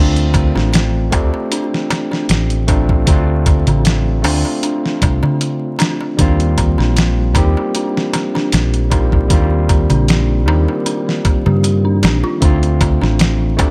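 Trip hop excerpt at 77 BPM in D phrygian, brooding and smoky, where a barky, overdriven tine electric piano through a combo amp, with harmonic tremolo, low-pass filter and tape echo, moves from Dm7 to Eb69 and back over a round, dark fingered dub bass and a gritty, compressed sampler-style drum kit with a thumpy kick that enters at 0.2 seconds, while a crisp metal-shell darbuka joins close and dry, an eerie, inharmonic FM synth bell plays chorused, delayed arpeggios in the background, and vinyl crackle hangs over the whole texture.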